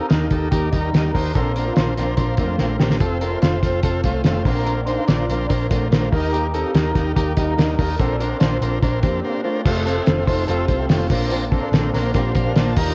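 Worn, warbling old cassette tape with drifting pitch and a light studio reverb colours this bright, breezy excerpt of jangly indie pop in a straight four. Up front, a cloth-damped, thuddy drum kit with a fat snare, tight kick and dark, muffled cymbals sets a gritty, lo-fi pulse alongside a round, foam-muted vintage bass. A buzzy combo organ with heavy vibrato carries the accompaniment, while a boxy fingerpicked twelve-string acoustic guitar, shimmering with octave doubling and ensemble chorus, sits in the background. An electric guitar through a small old amp, slightly broken-up and compressed, picks arpeggios just behind them. After a brief break, a very quiet string machine with sawtooth cellos and a slow attack enters at 9.7 seconds with mellow sustained chords, and a transistor combo organ fill closes the passage from 12.1 seconds.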